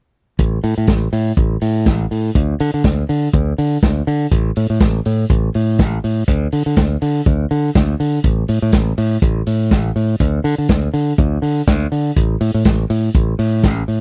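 Disco groove with a sultry, driving feel and a light swing on the sixteenths, cut from a longer piece. A bright, growly fingered electric bass sits up front alongside a vintage acoustic drum kit of hi-hat, punchy kick and medium-tuned snare, the drums muffled and lo-fi with a rolled-off top and a small-room character. Both parts play together from 0.4 to 14.0 seconds in a dry, close 1970s-style studio sound.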